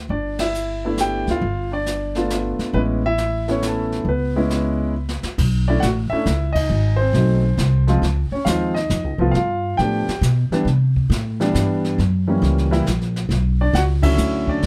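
A dry recording catches a jazz piano trio in a warm, playful waltz at 136 BPM, swung in 3/4. A woody, thumpy pizzicato upright bass and an intimate grand piano with audible action noise and long sustain sit up front, while a distant brushed drum kit with dark cymbals and a boomy kick stays lower in the mix and plays a short fill just before the second section opens at 5.4 seconds. Band accents land at 0.3, 6.5 and 14.0 seconds over rich extended harmony moving from G6 and Amaj9 through Bm11, C#maj9 and F#7b9 to Bm9.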